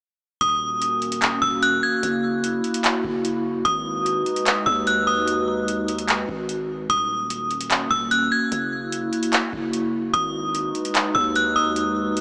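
Bathed in a huge ambient reverb and heard as if through a small speaker, this ethereal, melancholic atmospheric cloud-rap excerpt moves at 148 BPM in a half-time 4/4 feel in G# minor, cycling through D#m7, F#7 and G#m7. A bright, inharmonic FM bell carries the melody with chorus and digital delay, while a warbling, nostalgic tape-like pad built from detuned square and triangle waves holds dark, evolving chords with a slow attack that pump against the beat. Underneath, a deep, sine-toned 808-style bass sustains long decaying notes, and a booming analog drum machine with a deep kick, metallic hi-hats and handclaps sits up front with a tape-warm, small-room character.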